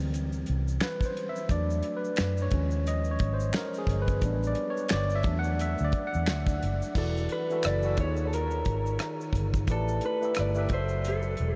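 A dreamy, reverb-soaked neo-soul groove with a smooth, soulful R&B feel and a swung pulse, where a barky, overdriven tine electric piano carries the first 7.0 seconds over a round, foam-muted fingered bass, a damped 70s drum kit with a fat snare, dark cymbals and finger snaps, and a faint tube shaker, before a slightly broken-up, lo-fi electric guitar with spring reverb takes the melody at 7.0 seconds, in a passage cut from a longer piece.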